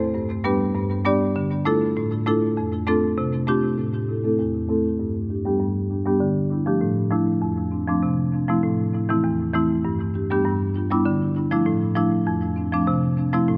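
A marimba played with medium mallets carries this bouncy, hypnotic dancehall excerpt alone from 0.1 to 13.6 seconds, its woody padauk bars sounding mid-forward and up front through a low-pass filter and digital delay, ranging from E2 to D5. At 99 BPM in straight 4/4, it cycles through G, Dmadd9, F6 and Am, and a filter sweep on the marimba opens the second section at 3.8 seconds and runs to 13.5. Light reverb and small room ambience frame the sound, and it is cut from a longer piece.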